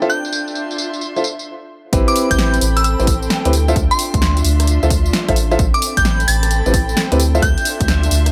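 UK garage in a two-step style, this skippy, late-night excerpt moves at 131 BPM in A minor with a swung sixteenth-note feel, circling between Dm9 and Am9 chords. From the start, boxy grand piano stabs carry a tape echo, a punchy analog drum machine supplies filtered hi-hat, rim click, snare and tambourine, and a muted, veiled string section bowed con sordino adds a dark texture that pumps against the sidechain. Above them, a glassy FM synth bell plays the melody high in its range, crystalline and full-bodied with chorus and tape echo, its notes decaying into a long release. After a brief stop at 1.5 seconds, the drop arrives at 1.9 seconds, when a deep, round dub sub bass with tube saturation sits up front alongside a punchy electronic kick drum re-recorded in a small room. The mix is bathed in light reverb, with the sub bass the most prominent part and the strings kept furthest back.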